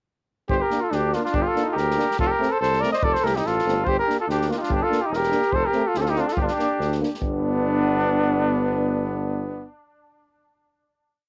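A scooped, vibrato-laced flugelhorn leads this short, virtuosic and bittersweet Balkan brass band piece at 143 BPM in a swung 2/4, with a clear trumpet harmonizing mostly in thirds, two warm euphoniums sounding offbeat chords in the background, a tuba on root-and-fifth bass, and an acoustic drum kit of punchy kick and snare played with bundle sticks until 7.4 seconds, all moving between G minor and F before a final G major chord, captured as a home cassette recording with tape echo on the flugelhorn and a small, wet booth ambience.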